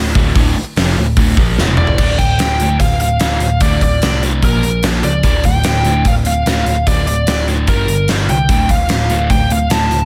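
Driving and menacing, this hard rock excerpt opens on a crunchy, double-tracked overdriven guitar riff over a growly picked bass and a punchy, up-front gated 80s drum kit with a fat snare and bright cymbals. During a drum fill that starts at 1.6 seconds, a biting lead guitar takes up the melody at 1.8 seconds, and a new section begins at 2.0 seconds, framed by light reverb and small room ambience.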